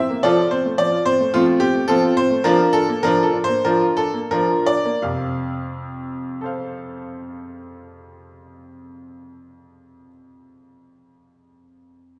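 A clear, up-front grand piano plays solo through this graceful, playful classical-period sonatina excerpt in F major, moving in a rubato 4/4 between 82 and 112 BPM, slowing down over the opening phrase before a new section begins at 5.0 seconds, with harmony shifting from F to Bb/F and back to F, all set in a wet recital hall reverb heard from further back in the room.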